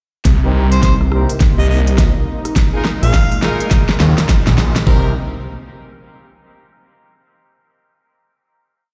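Glitch hop at 104 BPM in C minor, swaggering and funky, this whole piece is a short build from 0.3 to 4.9 seconds over Cm7 and Bb7sus4 that resolves onto a final Cm7 chord. An up-front, knocking electronic kick and a layered kit with a fat snare, crisp hats and rim clicks drive a swung beat with edits and a drum fill. Alongside them an up-front, swirling, saturated detuned saw bass chops out phrases. A warm, warbling analog pad sits in the background, and a clear jazz horn section fires syncopated close-voiced stabs under a filter sweep and dub echo, while a harmonica with tongue slaps and scooped notes plays short answering phrases from 0.7 to 3.4 seconds, all in a large studio reverb.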